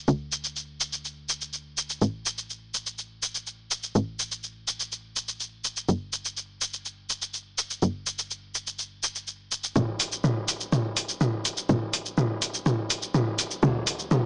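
Heard through a wet spring reverb with a two-second tail, this melodic techno fragment has the worn, boxy character of a home cassette recording played on a small speaker. At 124 BPM in a straight 4/4, it carries a hypnotic, melancholic mood, cut from a longer piece. A tight sequencer bass sits up front from the start, its nasal sawtooth and square-wave tones shaped by a fast-attack filter pluck that decays, giving a driving, evolving pulse between G1 and D2. Beside it, a punchy analog drum machine with a tape-warm, electronic character brings hi-hat, shaker and toms, each softened by a low-pass filter. At 9.8 seconds the music shifts into a build-up carried by a drum fill that runs until the fragment ends at 14.3 seconds.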